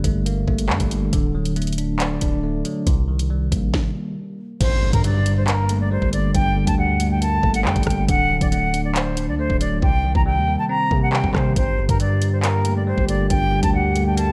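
A bell-like tine electric piano, deep long 808-style bass and an up-front drill kit with knocking kick, sharp snare and bright hats open this tense, cold half-time drill excerpt at 138 BPM in G harmonic minor, breaking off briefly before an electronic impact at 4.6 seconds brings in an airy silver concert flute melody with vibrato and digital delay, the hi-hats drop out for a moment, and a mellow French horn section adds sustained chords from 11.6 seconds, all in a moderate recital hall reverb.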